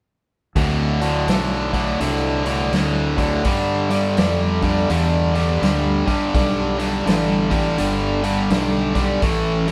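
Blues rock power trio with a southern rock edge, driving and swaggering in a swung 4/4, where an up-front, bright, double-tracked overdriven guitar riff moving from D5 to G7 rides over a growly, punchy fingered bass and a vintage drum kit with a rolled-off top, all three playing together from 0.6 seconds in a moderate stone room, captured live as a short section of a longer piece.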